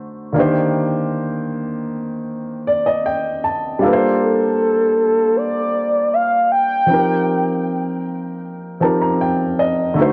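Longing and sensual, this short cut from a longer R&B piece moves at a slow, straight 78 BPM in 4/4, with an intimate, up-front grand piano carrying the harmony through Cm9/Eb, Gm11 and F9sus4, its natural tone showing audible action noise and a couple of fills. From 4.2 to 8.0 seconds, a mellow, round, horn-like sawtooth synth lead sings the melody with a soft attack, long sustained notes and vibrato, colored by chorus, phaser, tape echo and a cassette tape effect, before the piano closes with a fill at 8.4 seconds. The whole thing sits in a moderate spring reverb and has the dusky, rolled-off top of a home cassette recording.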